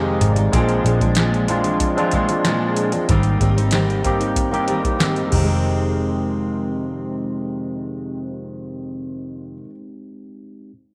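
An up-front, barky tine electric piano, overdriven and gritty with a cassette-tape tint, opens on a short fill in this hazy, wistful bedroom-pop excerpt in F dorian at 94 BPM, sounding from the start alongside a full-bodied fingerpicked steel-string acoustic guitar with chorus and warbly pitch drift, a round, foam-muted picked electric bass, and a dry, overdriven vintage rhythm box with a deep kick and metallic hats that drops out at 5.5 seconds as the chords move from Fm7 through Bb7 and Abmaj7 back to Fm7 in a light reverb.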